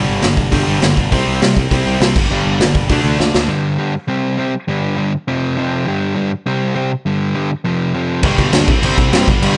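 A straight 4/4 punk rock groove charges along at 202 BPM with energetic, rebellious force, built on power chords circling G5, C5, D5 and F5. An up-front, dark, overdriven guitar riff runs the whole way through, joined by a very quiet second sludgy guitar, a bright, double-tracked distorted guitar in the background, a growly fretless bass and a gritty, pumping small-room garage kit with a punchy kick, saturated crashes and a rolled-off top. After a drum fill at 3.2 seconds the rest of the band drops away at 3.5 seconds, leaving the lone sludgy riff until the full band crashes back in at 8.2 seconds under a light reverb.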